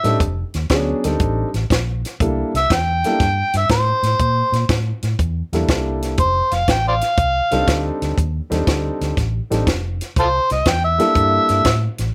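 Electric blues shuffle at 120 BPM in a laid-back, soulful swing, cut from a longer piece, with an overdriven, gritty harmonica taking the jazz-style solo melody with tongue slaps, scooped notes and light vibrato over an intimate concert grand with audible action noise and long sustain, a dark, round, foam-muted vintage electric bass, and a dry compact cocktail kit with a high-tuned snare and punchy kick, all moving through F13 and C13 chords, the opening F13 voiced rootless, in light reverb.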